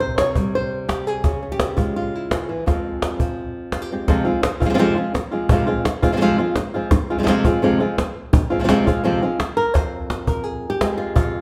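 A fingerpicked flamenco guitar and a cajon start together, opening a dramatic, mournful flamenco passage in F harmonic minor at 169 BPM in a straight 4/4. The bright, up-front guitar carries the melody across a range from F2 to Db5, with finger squeaks audible on the strings. The cajon sits close as well, its snappy, snare-buzzed hits carrying a small-room character. The harmony moves from a C5 chord to Db at 1.2 seconds and settles on F minor at 2.7 seconds. The two players perform live together in one large studio, and a wet reverb hangs around them. This short passage is cut from a longer piece and ends at about 11.4 seconds.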